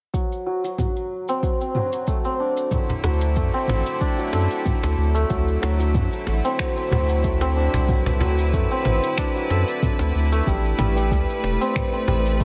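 Meditative and hypnotic, this organic downtempo passage moves at 93 BPM in 4/4 with a light 16th-note swing, opening on a mellow, shimmering santur playing ringing arpeggios up front through a low-pass filter sweep and digital delay, over an overdriven electronic kick and a deep house kit of finger snaps, shaker and toms that sound re-recorded in a small room. From about 2.7 seconds a clear studio string section adds bowed, biting sustained chords with light vibrato and sidechain pumping, joined by a woody, close and dry cajon and a round sine sub bass that also pumps. The harmony rests on D7 before shifting to Am7 at 10.5 seconds, all set in a light reverb in what is cut from a longer piece.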